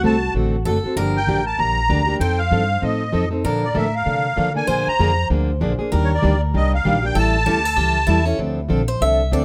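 Fiery and virtuosic, this brief cut from a longer acoustic string swing piece in D minor races along at 194 BPM with a swung feel, as a reedy, shimmering musette accordion carries the melody through a plate reverb until 8.2 seconds, a bright, boxy picked swing guitar plays a second line, a parlour-toned plugged-in steel-string guitar accompanies up front before taking a short solo at 8.4 seconds, and a woody, thumpy pizzicato upright bass anchors the changes from D7 through Gm7, Bbmaj7, Ebmaj7 and A7 to Dm7, all captured with close, detailed microphones and light reverb.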